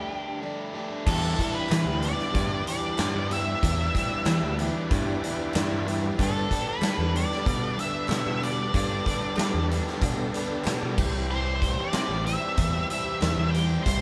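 A dark, fuzz-soaked octave lead guitar carries the melody of this brooding, gritty classic rock passage in E minor, which is cut from a longer piece and moves at a straight 94 BPM in 4/4. It opens on a brief break over a Dsus4 chord, with just the lead, a bright, double-tracked overdriven electric guitar riff and a very quiet picked acoustic guitar with audible finger squeak. At 1.1 seconds the full band arrives on Em7: a big, natural-sounding drum kit sits up front with a punchy kick, medium-tuned snare, hi-hat and shimmering crash cymbals, and a modern, direct electric bass adds a bright, punchy low end. A thick, overdriven tonewheel organ holds sustained chords far back in the mix, its key click and rotary-speaker chorus vibrato lending a gritty haze. Hollow group handclaps join very softly at 1.7 seconds, and the harmony shifts through Gadd9 to C as the whole band plays together in one room with a moderate studio reverb.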